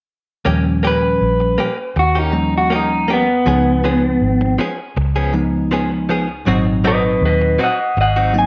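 Blues at a laid-back, gritty 80 BPM in straight 4/4, this short excerpt moves through Eb7, Db7 and Ab7 as a slightly broken-up, lo-fi lead guitar through a small old amp carries the melody up front from 0.9 s, over a bell-like tine electric piano with ensemble chorus, clean direct-recorded guitar stabs with tremolo, and a dark, round, foam-muted fingered bass, all in a moderate spring reverb.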